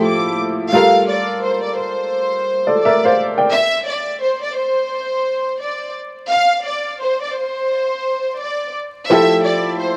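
Tough yet reflective, this hip hop excerpt in G dorian moves at 86 BPM with a swung 16th-note feel, its studio violin section carrying a pure, floating, sul tasto melody up front from start to finish. A woody upright piano with short sustain plays accompaniment over Fmaj9 and Gm9, drops out for a break at 3.5 seconds that leaves the bowed strings alone, and returns on Fmaj9 at 9.1 seconds. The sound is dry and gritty, coloured by vinyl crackle and a light studio reverb.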